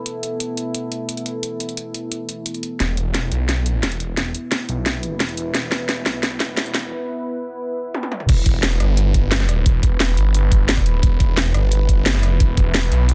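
Dark technical drum and bass at 175 BPM in E minor, tense and mechanical, where a deep, moody detuned sawtooth pad with chorus, reverb and sidechain pumping sustains chords under cracking snare, bright hats, rim clicks, toms and crash from an up-front layered electronic kit, a snarling, growling distorted saw bass with a moving notch pumps in at 2.8 seconds through a filter-swept build-up with drum fills and a break, and a knocking electronic kick joins at the drop at 8.3 seconds in a dense, heavily limited digital mix.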